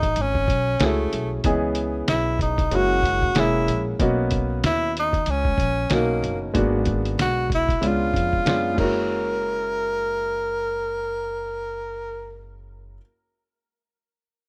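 This cool, mellow jazz-hop cut opens with its whole band at once: a tenor saxophone carrying the melody, a baby grand piano comping beneath it, a plucked upright bass and a sampler-style drum kit. The saxophone sits up front with a clear yet breathy subtone, scooped notes and a gentle vibrato, playing a jazz-style solo line. The piano sounds natural and close, its short sustain leaving space around the lush minor ninth and altered seventh chords, while the bass adds a woody, growly pizzicato pulse from down low. The drums are compressed, muffled and pitched down, with a thumpy kick, a fat snare, hi-hat and crash cymbal, all colored with a tape-like warmth and a lazy swing. The kit drops out at 9.0 seconds, the saxophone stops at 12.4 seconds, and piano and bass ring on to the end of this fragment of a longer piece, all heard through a small room ambience and a rough home-demo mix.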